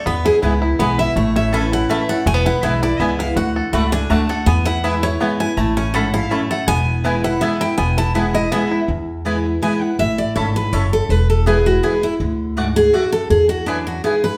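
Set in a three-beat metre with a light swing on the eighths, this driving, virtuosic bluegrass passage, cut from a longer piece, opens with a steel-string acoustic guitar soloing up front on the melody until 8.9 s, its bright, full-bodied dreadnought tone carrying fresh-string sparkle, finger squeak and a plate reverb. A boxy concert-size acoustic guitar picks the accompaniment, a twangy, percussive banjo rolls arpeggios with fingerpicks until 8.9 s, a mandolin adds stabs with a woody double-string ring, and a dark, thumpy pizzicato upright bass sits up front underneath. The chords circle between E, Aadd9 and D, and the whole band sounds from further back in a wet studio room.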